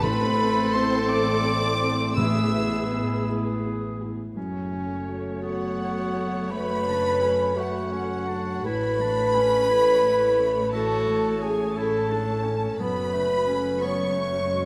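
A sorrowful, moving cinematic passage cut from a longer piece, it moves in a rubato 6/8 at about 57 beats per minute on the dotted quarter, settling into F# minor from 4.4 s. A dark studio violin section carries the melody with light vibrato and a soft, sul tasto touch, close and intimate. Around it weave a bright clarinet, a mellow cor anglais and a warm chamber violin section, while a hollow concert flute and very quiet, hard-mallet timpani on calf heads appear only until 3.2 s. A dark symphonic viola section and a felt-muted upright piano, its action noise audible in the background, fill out the accompaniment, and a distant, roomy French horn section holds sustained chords as the most prominent part. Dark cello and double bass sections give a pure, floating foundation, and the whole ensemble sits in a concert hall reverb that lends a long, wet tail.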